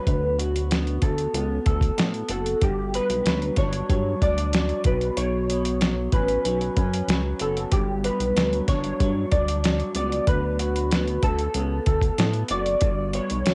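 Indie and bedroom pop with a laid-back, nostalgic mood, this fragment drifts over a gentle loop of D6, Gmaj7 and Bsus2 chords, all captured in a home cassette recording. Round, airy electric-piano-like synth keys carry the melody through chorus, analog delay and plate reverb. Beneath them, a twangy, slightly broken-up guitar from a small old amp shimmers with lush chorus and vibrato, a dark, glossy synth bass sits up front with tube saturation, and a gritty, compressed sampler-style drum kit gives a thumpy kick and tape-dusted snare and hi-hat.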